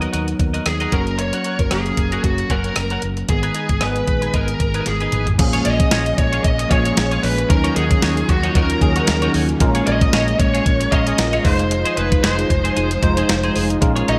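Lightly swung sixteenths drive this urgent, dramatic 1980s-style pop excerpt, where an up-front, thumpy 12-bit drum machine and a round, foam-muted fingered bass sit beneath a bell-like tine electric piano and a twangy, chorused twelve-string guitar riff; a dark, distorted bluesy lead guitar carries the melody from 0.7 s, very quiet string-machine cellos bring slow-attack phased chords from 5.4 s after a drum fill, mellow synth brass stabs sound during a band accent near the close, and a clean direct-recorded electric guitar slips in at 14.1 s, inside a bright digital production with plate reverb.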